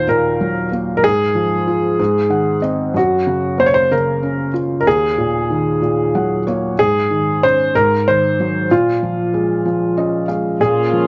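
A tender, romantic six-eight pop ballad in an unhurried 6/8, this excerpt sets a concert grand piano's melody, warm with deep bass and audible action noise, over a soft, mellow felt-muted upright piano that carries the accompaniment and adds brief fills at 2.0, 5.8 and 9.6 seconds. Only at 10.6 seconds does a dark, veiled string section, bowed con sordino with light vibrato, slip in with sustained chords. The sound is dry and close in a small room, with a 1970s studio intimacy that keeps every part up front, as the harmony moves from Ebm through Gbmaj7 and Ab7 to Bbm7.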